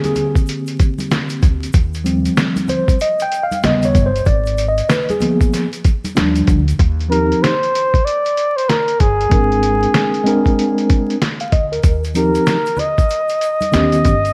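A swung 16th-note groove at 95 BPM in 4/4 drives this smooth, warm jazz-hop excerpt in Eb major. The lo-fi sampler-style kit sits up front, compressed, pitched down and overdriven, with a thumpy kick, fat snare and hi-hat that sound muffled, as if re-recorded in a small room. Ringing congas and a tube shaker, close and dry, sit in the background, drop out partway through, and return at 11.8 seconds. A clean tine electric piano, heard through its built-in speakers, leads the opening with lush chords such as Abmaj9#11, Eb69 and Eb7b13, and a woody pizzicato upright bass on steel strings joins at 1.4 seconds. From 7.1 seconds a jazz-style flugelhorn takes the melody up front, with light vibrato, scooped notes, a smooth top and a tape echo trailing its phrases. Light studio reverb and a bed of vinyl crackle give the whole mix a cosy, warm patina.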